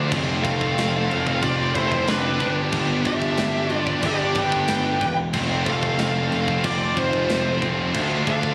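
Captured on a phone in a small room with club reverb, this heavy, relentless heavy metal excerpt moves at 92 BPM in a straight 4/4 over an F, G, F, Dm progression. A growly, fuzz-laden electric bass sits up front, while three picked rhythm guitars riff in the background: a dark, double-tracked overdriven one, a scooped, bright high-gain one, and a sludgy overdriven one. An acoustic metal kit enters at 0.1 seconds with a tight kick, medium-tuned snare and bright crashes. At 0.4 seconds a distorted high-gain lead guitar carries the melody with delay, joined by a darker second lead line in the background.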